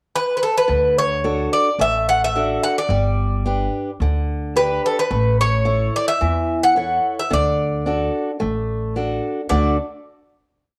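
A bright, metallic Greek bouzouki opens the piece at 0.2 s with a short pickup, its double strings and some octave-doubled courses carrying an ornamented modal melody in a sunny, hopeful Greek folk tune in straight 4/4. At 0.7 s a boxy, picked old ladder-braced acoustic guitar joins with oompah bass notes and chord figures, alongside a woody pizzicato upright bass on steel strings playing a two-feel of roots and fifths, all three up front as the harmony moves from D to G to A and home to D. The small band sits in a wet spring reverb with small-room ambience, and the playing ends at 9.8 s, leaving a final chord to ring.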